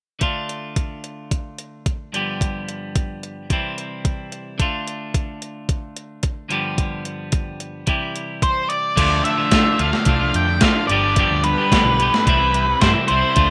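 Rough home-demo sound with light digital ambience frames this moody, bittersweet indie rock piece in D dorian at 110 BPM, cut from a longer work, where a crunchy overdriven guitar riff and an up-front gated 80s drum machine with a thumpy kick and gated-reverb snare open over a Dm, G7, C progression, a dark octave-fuzz lead guitar with digital delay takes the melody from 8.4 seconds, and at 9.0 seconds a bright, thick fuzz guitar with subtle chorus enters in the background alongside a round, hollow-body short-scale picked electric bass.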